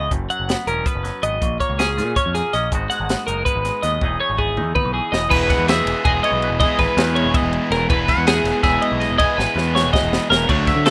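A warm, clean, up-front twelve-string electric guitar spins arpeggios over a bright, compressed twangy guitar and a growling, overdriven picked bass, while a compact cocktail drum kit with a high-tuned snare, punchy kick and dark cymbals adds fills in this playful, wistful math rock and midwest emo passage in 7/8. At 5.3 seconds a bright, double-tracked stack guitar cranks in with an overdriven riff, and a warm twangy lead guitar takes up the melody just after, as the earlier twangy accompaniment drops away at 6.6 seconds. The dry, rough home-demo sound carries little reverb, and the clip is cut from a longer piece.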